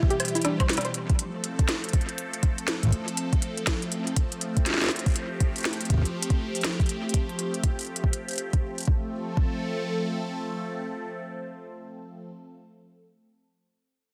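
Glitchy and wistful, this IDM excerpt moves in 4/4 with a swung sixteenth-note feel. From the very start, a round pluck plays brief arpeggios, its dark tone coloured by chorus and tape echo. It stops at 0.9 seconds, just after a drum fill and as the harmony moves from C to F. Up front and lasting until 12.3 seconds, a phased analog pad holds sustained chords, its detuned sawtooth tone swirling and evolving with a moving notch, a slow attack and a long release, treated with phaser and chorus. A soft electronic kick drum sits up front until 9.5 seconds, alongside an organic electronic drum kit of crisp hi-hats, woody snare and woodblock with tape echo, both re-recorded in a small room. Light reverb and digital ambience surround a dense, heavily limited modern master.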